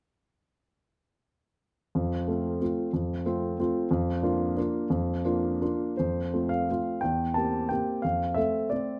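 A lilting 3/4 waltz pulse, pushed and pulled by rubato somewhere between 155 and 196 BPM, carries this brief classical fragment cut from a longer piece in F major. A dark grand piano plays alone from 2.0 to 9.0 seconds, ranging from E2 up to A5, its mellow, intimate tone sitting up front with the natural sound of the action audible beneath the notes. The mood is playful and graceful, with the harmony resting on F before moving to Bb over F, then returning to F and passing through C7 over E on its way home to F. A new section begins at 6.0 seconds and carries the fragment to its close. Close, detailed microphones capture the instrument, set in a moderate recital-hall reverb with a 1.3-second decay.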